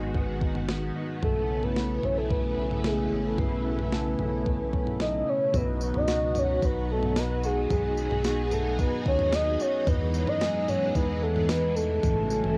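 A round, up-front synth lead carrying the melody opens this ethereal, dreamy dream pop excerpt at 111 BPM in B mixolydian, heard from the start with its chorus, tremolo, vibrato, analog delay and cassette tape coloring, over a lush string machine holding sustained chords, a slightly broken-up electric guitar picking compressed arpeggios through chorus and delay, and a glossy, dark pulse-wave synth bass. A clean 12-bit drum machine enters at 0.1 seconds with a thumpy kick, medium-tuned snare, tambourine and toms, tinged by cassette tape. The harmony moves from G#m7 and B9sus4 into a second section at 5.5 seconds on B, then Emaj7 and A6, all in a moderate reverb with the character of a home cassette recording.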